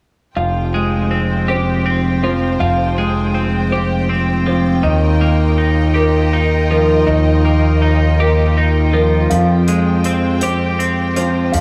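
A growling, overdriven fingered electric bass sits up front in this cathartic, cinematic post-rock passage, its bright, amped tone anchoring a slow 54 BPM pulse in 6/8 with a straight feel in F minor. Beside it, a twangy, compressed twelve-string electric guitar picks clean arpeggios, bathed in spring reverb and tape echo. Further back, a felt-muted upright piano adds soft, boxy arpeggios through its own tape echo, dark and intimate against the brighter guitar. A lush, bowed string section holds sustained chords with vibrato and a smooth top, moving from Fmadd9 to Ebadd9 and returning to Fmadd9 at 9.3 seconds. A quiet acoustic hi-hat enters at that same moment, and the whole cut from a longer piece sits in light reverb with small room ambience.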